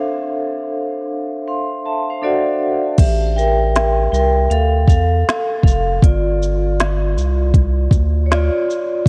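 A 79 BPM groove in 4/4, swung at 63% on the sixteenths, sets the pace for this hazy, nostalgic lo-fi hip hop fragment in D minor, tuned slightly sharp to A4 = 445 Hz. It opens on a break where the vibraphone, struck with medium hard mallets, plays by itself, its metallic, ringing tone softened by cassette tape and a low-pass filter and colored by a slow motor vibrato. At 3.0 seconds the organic electronic drum kit and a round analog bass enter, and the vibraphone moves into a solo that runs to the end at 9.1 seconds. The up-front drums pair a soft kick and woody snare with crisp hats, shaker and crash, roughened by vintage 12-bit sampler grit. The deep, dark bass blends square, sine, triangle and sawtooth waves with wave-folding, a fast attack and long sustain. Chords drift from Dm9 and D7 through Am7, Dmadd9 and G5 to Csus24, and a cathedral reverb with a 5.3-second decay, along with cassette tape coloring, soaks the dreamy mix.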